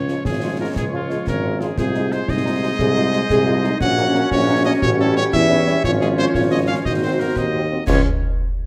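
Spirited and proud, this short cut from a longer military-style march for wind band strides along at 118 BPM in a straight 6/8, set in D-flat major. A clear cornet carries the melody with light vibrato and a soft attack, sitting present over a tight, close-miked woodwind section playing a second line, while a mellow euphonium adds another second line in the background from 0.3 seconds. Underneath, a clear, up-front tuba anchors the bass with a vintage tone, a very quiet warm trombone section holds sustained chords, and a distant, roomy French horn section fills in the accompaniment. Concert snare drum, concert bass drum and clash cymbals with dark cymbals drive the beat from 0.1 seconds. The harmony moves from D-flat through Ab/C and Gb/Bb to a striking A7, then Db/Ab and Ab9 before settling back on D-flat. A wet large-studio reverb gives the ensemble a spacious, ceremonial bloom.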